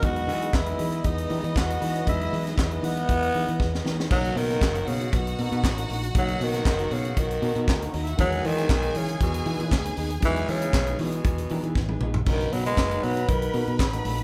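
Glamorous and celebratory, this disco excerpt moves at 118 BPM in a straight 4/4, set in B major with tuning a touch below standard pitch. A growling tenor saxophone carries the melody up front, its raspy, breathy jazz tone gritty yet clear, while a lush symphonic string section bowed with smooth vibrato traces a second line. The tight funk drum kit sits forward with a high-tuned snare, handclaps, hi-hat, crash and toms, and drum fills arrive at 3.6 and 11.8 seconds. A fingered electric bass plays directly beneath, joined by a slightly broken-up, compressed electric guitar in the background and a very quiet, worn grand piano whose action noise is audible. A mellow, vintage-sounding French horn section holds loose sustained chords in the background during the opening, drops out at 4.1 seconds as the harmony shifts from Emaj7 to Bmaj7, and returns at 12.3 seconds. The whole band plays live in one room, framed by a moderate large studio reverb.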